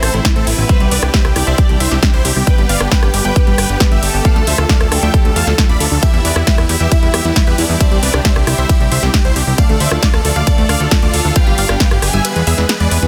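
A huge, detuned supersaw lead carries the melody of this bittersweet, euphoric uplifting trance excerpt, its bright tone pumping against the sidechain and trailing tape echo, while a very quiet, mellow square-wave unison lead and a distant, bowed violin section with delay play second lines. Underneath, a silky analog string pad holds sustained chords, a lush, gritty unison pluck spins arpeggios in the background, and a fat, thick analog bass sits up front with sidechain pumping. A punchy layered kick and a big-room dance kit with metallic hats drive the dense, heavily limited mix in digital ambience until the kick drops out at 12.2 s.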